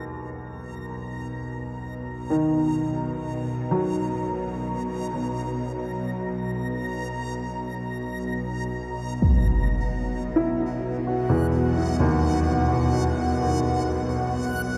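A natural, up-front baby grand piano opens with arpeggios through a diffuse ambient delay as a tense, string-like drone, detuned and sawtooth-edged with vibrato and a noise layer, fades in low beneath a reversed, granular, dreamy swelling texture high above, and a huge low-passed impact strikes at 9.2 seconds in this ominous, desolate dark ambient drone piece, all soaked in a vast, dark-sounding reverb.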